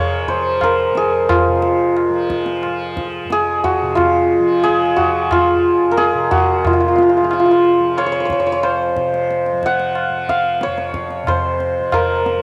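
Hindustani classical music in raga bhairavi on F, introspective and longing, begins at 90 BPM in 4/4 and gradually speeds up: an up-front, hammered santur carries the ringing, shimmering melody with tape echo over a softly plucked, buzzing tanpura drone that has a cassette tint, while a low-tuned, compressed, saturated tabla with a short ring enters at 0.3 s, all set in a lush hall reverb on a home cassette recording cut from a longer piece.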